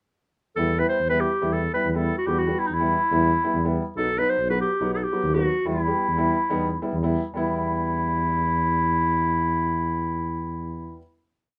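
In a straight four-beat pulse, a mellow tuba marks steady quarter notes while an upright piano adds syncopated triad chords. This short, complete klezmer piece carries a bittersweet, soulful mood. Entering at 0.6 s, an up-front clarinet with a clear, vintage tone sings a modal melody laced with ornaments. The woody, intimate piano carries audible action noise and long sustain, and the tuba sits forward with a light vibrato. The harmony moves from E minor to B and back. From 7.4 s a final chord rings out in a moderate studio reverb.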